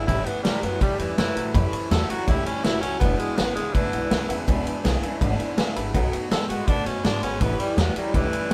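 Rollicking and upbeat, this short rockabilly cut at 164 BPM in E mixolydian puts a raspy, forceful tenor saxophone up front on the melody, riding over a thumpy gut-string upright bass and a vintage drum kit with tight kick, snare and ride cymbal. A twangy, slightly broken-up electric guitar through a small old amp plays a riff colored by phaser, while a bright, full-bodied picked steel-string acoustic guitar sits in the background. A jangly, detuned honky-tonk upright piano adds very quiet accompaniment and a fill from 5.4 to 5.9 seconds as the chords move through A7, E7 and B7, all heard as a band playing live in one room with moderate studio reverb.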